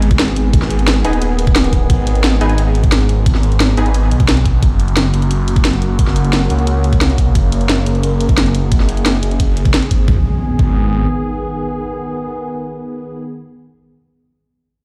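A swirling, thick detuned saw bass with phaser and overdrive anchors this tense, dark technical drum and bass cut at 176 BPM in G# minor, pumping against an overdriven, knocking electronic kick and an up-front drum kit of cracking snare and hi-hat. Meanwhile, a warbling, bright resonant pad sustains chords, a bold, punchy orchestra-hit-like synth stab with delay flashes between 1.0 and 3.9 seconds, and electronic impacts sit in the background, one trailing on after the drum kit stops at 10.0 seconds, the mix sounding as if played through a big system in a bare stone room.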